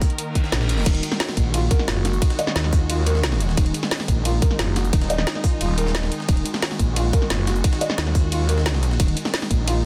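A metallic, saturated wobble bass drives this tense, mechanical excerpt of dark technical drum and bass in Eb minor at 177 BPM, pumping alongside a growling FM bass that surfaces from 0.5 s, a tight up-front electronic kick, a layered kit with a woody snare and metallic hats, a very quiet gritty breakbeat, a brief reverse cymbal, a felt-muted upright piano arpeggiating through tape echo from 0.9 s, and an airy, evolving sawtooth pad sustaining chords over a dense, heavily limited master.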